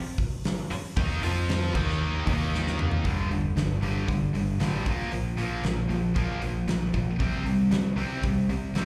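Swaggering and powerful, this hard rock clip at 115 BPM in a straight 4/4 opens with a huge arena drum kit, its fat snare and punchy kick up front, joined at 0.7 seconds by a distorted, high-gain guitar riff with slapback echo, a double-tracked second high-gain guitar in the background that drops out at 3.0 seconds, a bright overdriven guitar behind them, and a growling, overdriven fingered bass. A drum fill at 2.5 seconds leads into the second section, as the power chords move from F5 and Eb5 to G5, Bb5 and C5. The sound is a live gig heard through the venue's PA, with club reverb, small-room ambience and lossy compression artefacts, cut from a longer piece.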